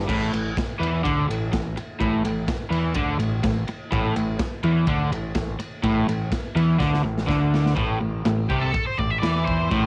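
Raw and gritty, this garage rock excerpt in A minor drives along at 125 BPM in a straight 4/4, built on a crunchy, double-tracked overdriven guitar riff with a cassette-tape grain, a bright, growling picked bass pushed into overdrive, and a saturated small-room drum kit with a punchy kick, dark cymbals and a pumping room sound. After a drum fill at 6.8 seconds the harmony shifts from A5 to Am at 7.8 seconds, and a dark octave-fuzz lead guitar bursts up front at 8.5 seconds for a brief distorted solo. Light reverb and the faint mains hum of a home cassette recording frame the whole performance.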